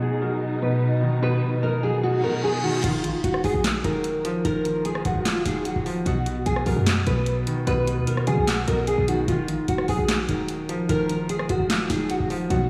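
This eerie, brooding trap excerpt opens on a fingerpicked nylon-string guitar carrying the melody up front, treated with ensemble chorus, analog delay and a low-pass filter, over a felt-muted upright piano whose soft, intimate accompaniment reveals audible action noise. Alongside them, a muted string section bowed con sordino holds dark, veiled chords with vibrato, and it drops out at 2.8 seconds just as an electronic reverse cymbal swell rises into the drop. From there a trap kit moves in a half-time feel, its sharp snare, bright hats, handclaps, rim clicks and crash cymbal re-recorded in a small room for a produced, electronic edge. A short, punchy 808-style bass with a fast attack and a noise layer decays quickly. The harmony alternates between B and Eb minor add9, and the whole mix sits dreamy and soaked in lush hall reverb, with a final reverse swell at 12.5 seconds before the cut.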